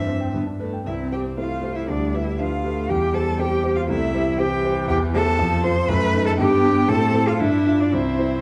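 In a rubato 2/4 at 119 BPM, this spirited, lively fragment of a quick classical-period piano-quartet movement in C major sets a distant, bowed violin melody with vibrato and portamento over an intense, up-front cello second line with a smooth top, a close, expressive viola and an intimate, vintage-toned concert grand with deep bass and audible action noise, every part sounding from 0.0 to 8.4 seconds in a dark, warm production with wet recital-hall reverb.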